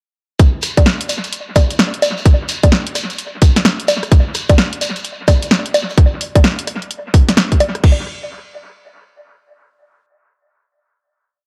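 A tight, layered electronic kick drum in a two-step pattern enters at 0.4 seconds in this moody, skippy UK garage piece, together with a punchy analog drum machine whose skipping swung hats and rim clicks, snare, bongos and crash carry a dub echo. A grainy, mellow shekere plays hand-played sixteenths from a distance in a large room, also echoed, until it drops out at 6.0 seconds. The kick sits up front with a tape-warm weight, and the drums stop at 8.0 seconds as the piece closes on a final hit in an echo-heavy mix with light reverb.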